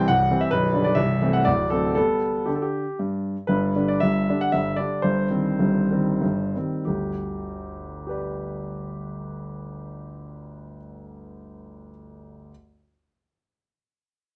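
Dotted rhythms lilt through this graceful, rustic romantic triple-time dance in 3/4 and G major, a 12.5-second excerpt for solo concert grand piano played with rubato at 86-144 BPM, its clear, up-front tone reaching into a deep bass and ringing with long sustain in light reverb, while the pace slows between 2.7 and 6.9 seconds as the harmony turns from a C-to-D7 approach toward G into a shadowed C minor over G before resolving back on G.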